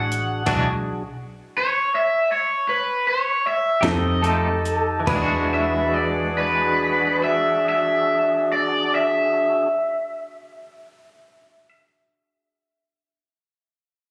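Captured on a phone in the room with club reverb and compression, this short cut from a slow, soulful yet rollicking 12/8 blues in E mixolydian moves at 47-57 BPM, slowing over its first 5.1 seconds as the harmony moves from a rootless E9 to F9 and back. A bright, overdriven garage guitar carries the melody up front over fat organ chords through a slow rotary speaker, a smooth jazz-style horn section with light vibrato in the background, a round, foam-muted fingered bass, and a clean electric guitar accompanying with tremolo. A compact cocktail kit with dark cymbals, a high-tuned snare and a tight kick stops at 5.3 seconds, while a slightly broken-up second guitar through a small old amp enters at 3.8 seconds.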